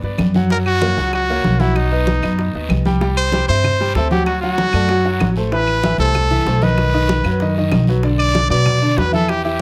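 A straight, driving 4/4 salsa groove at 191 BPM runs through this danceable cut from a longer piece, with very quiet high-tuned bongos alongside hard-handed congas, woody claves and raspy guiro set in the background, all around a dark, thumpy pizzicato upright bass up front and a brilliant, smooth grand piano accompanying from D3 to G5, while a bright, present solo trumpet with vibrato enters at 0.5 seconds over chords moving from F# through B, C and D to Am and Bm, all captured with close, detailed microphones and light reverb.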